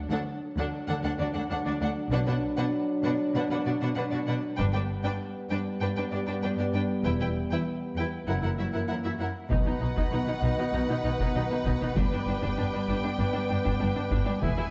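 Cinematic epic orchestral film score at 98 BPM in D major, adventurous and heroic, where warm French horns hold sustained chords beneath a lush, vibrato-laden violin melody and a smooth-topped second violin line, supported by focused violas and cellos, with distant double basses joining at 2.1 s, while heavy-stick taiko drums strike briefly at 4.6 s and return at 9.5 s alongside background woodwind chords, set within a dark, wet scoring-stage reverb.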